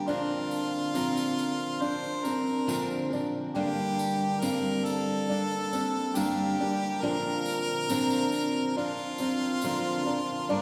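Acoustic folk for a duo or small band, this short excerpt from a longer piece moves at an unhurried 69 BPM in a straight 4/4, with an intimate, reflective mood. A picked steel-string acoustic guitar carries the accompaniment up front, its tone warm and auditorium-like, while a felt-muted upright piano adds soft, mellow arpeggios with a vintage character and short sustain. A clear harmonica with light vibrato plays a punchy second line in a classical style, sitting forward in the mix. A jingly tambourine sits in the background from 0.1 to 9.8 seconds, giving gentle percussion. The harmony shifts from Bbadd9 to Gm and back to Bbadd9, and the whole ensemble is bathed in a long, wet church reverb that lends the recording a spacious, hall-like glow.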